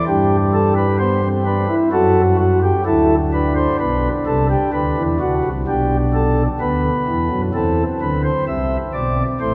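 A baroque-style fugue in three parts, this short classical piece is given to a lone pipe organ speaking through soft flute stops, its tone rounded and gently romantic in voicing. The mood is contemplative and solemn, moving in an unhurried, straight 4/4 pulse. The organ sits up front in the sound, spanning from deep tones in the low register up to clear notes in the treble. A long, wet cathedral reverb surrounds it, letting each chord hang in the air and bloom through the vast space. The harmony settles on G before passing through D7 over F# and a G chord over B, and at 7.5 seconds a new section turns toward A minor, closing this fragment cut from a longer work at 9.5 seconds.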